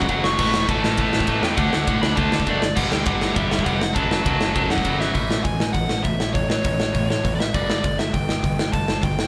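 This rowdy, energetic punk rock excerpt opens at 202 BPM in straight 4/4, with a band playing live in one room under light reverb. A nasal lead guitar with a parked wah and overdrive carries the melody over two picked rhythm guitars, one distorted and one warm and overdriven, plus a picked bass that sounds direct and amped, while an up-front acoustic kit with bright cymbals, a medium-tuned snare and a punchy kick drives the chords A, D, G5 and F#m. A drum fill at 5.0 seconds leads into the second section, where the overdriven rhythm guitar drops out at 5.1 seconds and the rest of the band carries on over A and G5.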